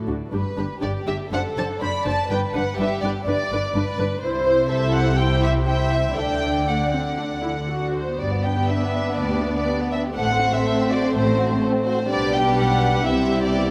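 A quick classical-period movement for string orchestra, graceful and spirited, with a rubato feel and cut from a longer piece. From 0.6 seconds a violin section carries a pure, floating melody up front over a second violin line, a dark viola accompaniment, warm cellos and a rich double bass section, every part bowed sul tasto. The intimate, close lower parts shimmer with vibrato beneath the soft-attacked tune, and a wet concert hall reverb surrounds the ensemble.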